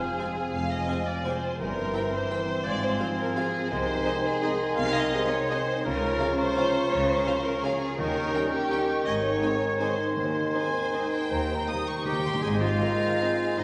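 Bathed in wet concert-hall reverb with a dulled top, this sweeping, elegant orchestral ballroom waltz excerpt sways in a rubato 3/4 at 149-183 BPM and settles into Ab major from 3.7 s: a lush, up-front violin section carries the melody over a second violin line, an airy flute group, a mellow clarinet, a distant cor anglais and a roomy bassoon, while a very quiet viola section, a faint horn section holding chords, a ringing thumb-plucked harp in arpeggios, and cellos and double basses on the bass fill out the texture, with soft-mallet timpani entering at 8.0 s and adding a round fill at 11.3 s.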